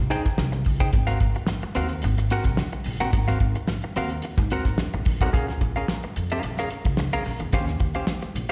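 Heard through a venue's PA with recital hall reverb and a light studio sheen, this short funk excerpt from a longer piece has the roomy feel of a live gig. At 109 BPM in a straight 4/4 in Bb minor, the groove is driving and hypnotic. A damped 70s drum kit sits up front, dry and acoustic, with a fat snare, tight kick and hi-hat holding the pulse. Underneath, a pizzicato upright bass with steel strings gives a woody, warm low end. A clean, compressed semi-hollow electric guitar, fingered and also up front, adds hollow-body chords coloured by a slapback echo, moving from Dbmaj7sus2 to Ab13 before the second section at 5.3 seconds shifts to Bbm7 and then Eb13.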